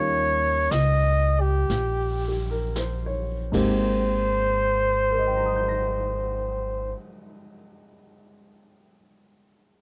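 Tender and late-night, this swung jazz ballad fragment eases to a slower pace over its opening seconds. A warm, vintage-toned flugelhorn sings the melody with vibrato up front, over woody pizzicato upright bass and an upright piano of short sustain that carries on alone until 9.8 seconds. A soft brush kit with dark cymbals and a boomy kick sits quietly beneath, entering at 0.7 seconds and stopping at 3.7, all in a close, detailed recording with light reverb.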